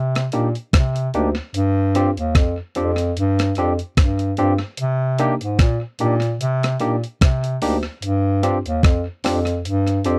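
Smooth and bittersweet, this lovers rock reggae excerpt sets a mellow, roomy bass clarinet under a crisp 8-bit drum machine with a thumpy kick, hi-hat and rim click treated with tape echo, while a barky, lightly overdriven tine electric piano moves between Cm9 and G7sus4, all captured in a dry, close 1970s-style studio sound.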